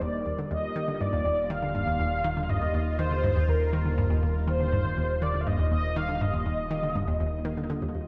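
Ambient, sequencer-driven space music with an expansive, luminous mood, cut from a longer piece and resting on a single sustained Ebmaj7 chord. An up-front, hollow, bouncy square-wave pluck plays a riff through chorus, phaser and tape echo over a fat, saturated analog bass, while a sweeping, resonant pad with chorus holds bright, evolving chords. A mellow, horn-like synth lead carries the melody up front, warbling with vibrato through ensemble chorus, cassette tape and tape echo, all set in a wet concert-hall reverb with a dark, warm production and audible lossy compression artefacts.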